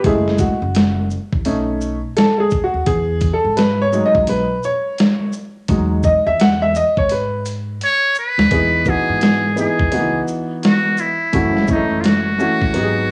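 A muted trumpet slips in at 7.8 seconds with a buzzy, breathy, whispered tone, carrying the melody up front in an intimate jazz style through a cassette-tape haze and plate reverb. This is a smooth, relaxed slice of jazz-hop from a longer piece, built on a swung 16th-note hip hop groove. A clear concert grand piano with deep bass and a vintage, smooth character takes a solo passage over the opening 8.5 seconds, its seventh-chord harmony bathed in plate reverb. Underneath, a woody, growly pizzicato upright bass sits lower in the mix. The dusty sampler-style drum kit brings a thumpy kick, a medium-tuned snare, hi-hat and shaker, all compressed with 12-bit grit and cassette wear, and it throws in a fill from 7.8 seconds just before the second section begins. The whole piece carries a homemade cassette feel with small-room ambience and light reverb.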